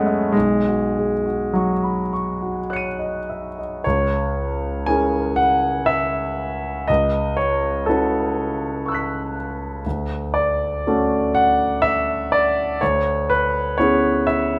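A lone grand piano opens this hazy, mysterious fragment of impressionist classical music. Its intimate, natural tone sits up front with long sustain and audible action noise, moving in a loose, rubato 3/4 across a span from B1 to D#7. After an opening on Badd9, new material arrives at 3.8 seconds, drifting through colored harmonies such as C#m6, Dmaj7 and C#m7/D inside a moderate stone-room reverb.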